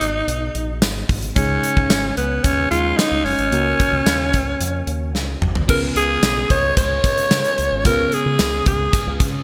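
A breathy, raspy alto saxophone carries the melody up front with vibrato and scooped notes over a gated 80s drum kit with a punchy kick, a round envelope-filtered fingered bass and a mellow, chorused and phased FM electric piano tucked in the background, giving this glossy, romantic 1980s-style pop fragment a polished, lush hall-reverb sheen, and after a drum fill at 5.1 seconds a double-tracked overdriven electric guitar joins at 5.7 seconds as the harmony settles on Db7.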